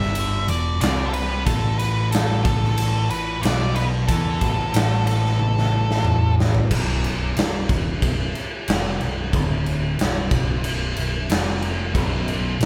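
Heard in light reverb as a band playing live in one room, this brooding, ominous stoner and doom metal excerpt at 92 BPM in B minor sets an up-front, punchy acoustic drum kit in a bright stone room against two thick, distorted fuzz guitars and a growling overdriven bass in the background, while a dark octave-fuzz lead carries the melody until 6.3 seconds, a drum fill at 5.4 seconds leads into the B minor passage at 6.7 seconds, and the second rhythm guitar drops out before returning at 11.9 seconds.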